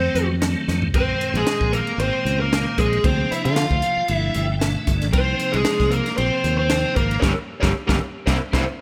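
Electric jazz fusion with a funky, slick swing, where a dark, up-front overdriven lead guitar carries the melody over a crunchy second guitar line, a piping tonewheel organ with key click and slow rotary speaker that steps forward for a fill at 4.1 seconds, a direct fretless bass, and a crisp acoustic drum kit with a high-tuned snare and punchy kick that enters at 0.2 seconds, fills at 0.7 seconds and joins the band accent closing out the cut under light reverb.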